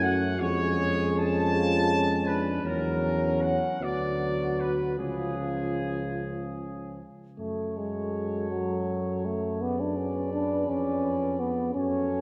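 Elegiac and yearning, this hymn-like classical passage for brass band moves in a flexible, rubato 6/8, cut from a longer piece. A dark, distant trumpet section carries the melody over a French horn section's gently vibrato-tinged second line, while two euphoniums share the accompaniment, one warm and set in the background, the other smooth-topped with light vibrato, and a punchy, up-front tuba anchors the bass. A roomy church reverb surrounds the ensemble, and the harmony turns into a new section at 7.4 s before reaching a diminished chord near 10.7 s.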